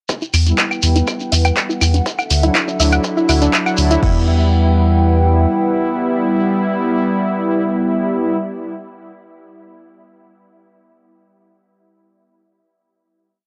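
A dry, gritty hardware recording with a cassette-tape grain opens this complete melodic techno piece in E minor at 122 BPM, melancholic and hypnotic in mood. A punchy, layered electronic kick drives a four-on-the-floor pulse with a small room ambience, joined by an analog drum machine's programmed hats, claves, claps and crash, and a close, grainy shekere in hand-played sixteenths. Up front, a round analog bass plays off-beat notes with sidechain pumping, while a soft, mellow pluck runs a 6-step loop that drifts against the bar, coloured by chorus and tape echo. Bold, fat synth brass fires sparse echoing chord stabs in close voicing, and a deep, moody pad with ring modulation and a sub octave sustains beneath, moving from Em to Dadd9. Filter sweeps on the arpeggio and the polysynth shape a build-up until 4.0 s, when the drums fall away. The pad and brass then hold a final Em chord until 8.4 s, with the bass continuing beneath them until 5.5 s.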